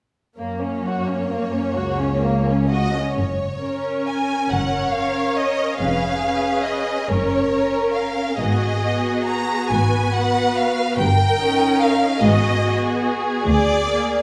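Classical orchestral writing for strings, this slow romantic movement in F# major unfolds in a rubato 6/8 at roughly 40-50 dotted-quarter beats per minute, with a tender, warm mood. Heard as a passage cut from a longer piece, it opens at 0.4 s with a rich, up-front violin section singing the melody with expressive vibrato, while a second violin section adds a soft-attacked, smooth-topped second line beneath it. The viola section fills the middle with an intense, lush accompaniment, and the cellos carry the bass with expressive, bowed vibrato. At 3.2 s, as the music moves into its second section, a clear double bass section joins with light vibrato and an intense low tone. The harmony drifts from F# through C#7/E#, G#m7 and D#7/G before reaching A#7/D near the close at 14.2 s, all set in a wet scoring-stage reverb.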